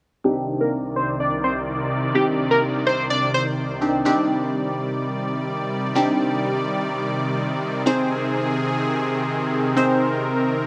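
A straight 4/4 pulse drives this bittersweet yet confident pop passage, where a punchy, catchy sawtooth lead carries the melody with dub echo before dropping out at 3.4 seconds. Beneath it, a glassy, crystalline wavetable pluck with chorus plays a mellow accompaniment while a smooth, up-front supersaw holds sustained chords. A filter sweep runs through the first section until 4.1 seconds, the harmony shifts from Cmadd9 to Ab/C at 7.9 seconds, and a lush hall reverb surrounds the whole.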